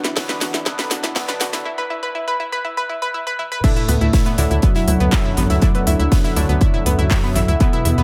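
Melodic techno with a cinematic, hypnotic mood, this clip builds for its opening seconds as a punchy, up-front electronic kick, a house drum kit with cracking snare and crisp hats, and a very quiet gated 80s drum kit in a bright stone room support a bold, nasal analog synth brass melody, round, bright analog pluck arpeggios with tape echo, very quiet synth brass stabs, sustained chords from a smooth, warm analog pad, and a moody, warbling deep dark ambient pad, before the drop at 3.6 s brings in an airy, dreamy second line, a tight, driving sequencer bass with sidechain pumping at 3.9 s, and a barely audible overtone-sweeping drone at 4.9 s, all in an echo-heavy mix with light reverb.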